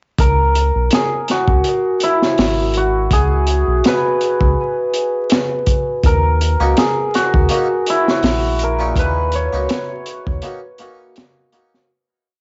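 A hammered, shimmering cimbalom carries hook-like motifs up front in this brooding, smoky trip hop piece, its tone roughened by 12-bit sampler grit and trailed by tape echo. Beneath it, a saturated breakbeat with a punchy kick and high-tuned snare loops with edits in a light swing, while a deep, round analog bass plays a dub-style line until 10.4 seconds. An airy harpsichord enters quietly at 6.6 seconds with syncopated rootless chord stabs shaded by harmonic tremolo, and the piece fades out from 8.0 seconds amid the dull top end and vinyl crackle of a cassette home recording.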